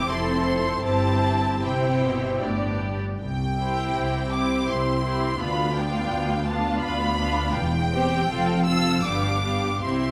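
Lyrical and warm, this slow romantic movement for string orchestra sways in a rubato 3/4, cut from a longer piece. Up front, the violins carry a smooth, vibrato-rich melody high above a more distant second violin line, while the focused violas fill the middle. Close, rich cellos and even double basses anchor the harmony, all bowed and lush within the generous reverb of a scoring stage.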